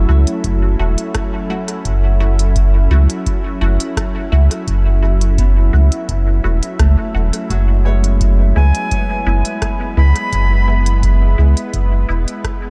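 A lush, chorused analog pad, a ringing, fingerpicked Celtic harp with tape echo and a round, up-front sine sub bass open this deep, meditative ambient dub fragment, soon joined by a muted, phased chord stab with dub echo, smooth hi-hats and rim clicks from an electronic kit, and a very quiet analog kick. The harmony rests on F#m7 before moving to E at 7.5 seconds, and at 8.6 seconds a pure, distant silver concert flute with vibrato enters through dub echo for a brief, high melody. The dry mix fades out from 11.3 seconds.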